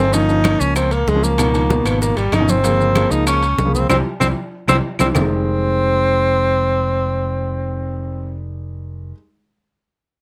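A breathy, whispered tenor saxophone leads this fiery, driving Afro-Cuban jazz excerpt up front over a round, dark electric bass and a concert grand piano with a deep low end, while ringing congas, tight high bongos, grainy maracas, metal-shell timbales and woody claves drive the groove until a drum fill and band accent at 3.9 seconds give way at 5.1 seconds to a Fm9 chord in a small, moderate room.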